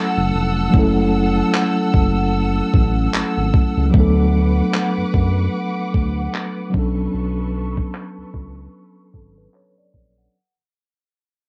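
A longing, late-night mood settles over this contemporary R&B excerpt, moving at 75 BPM in 4/4 with a gentle swing on the sixteenths. A mellow tine electric piano sits up front from the start, carrying the accompaniment through F#m7, D6 and Bm9 chords, while a clear, lush studio string section holds sustained bowed chords high above it with focused vibrato. A smooth, dark synth bass enters at 0.2 s, its sawtooth and square-wave tone touched by ring modulation and a fast attack. At 0.7 s a dusty soul sampler-style drum kit joins with handclaps and a thumpy kick, gritty and overdriven with a cassette-tape character, sitting forward in the mix. The whole home cassette recording is dry and low-pass filtered, and from 3.9 s a filter sweep and fade-out carry the piece toward its close.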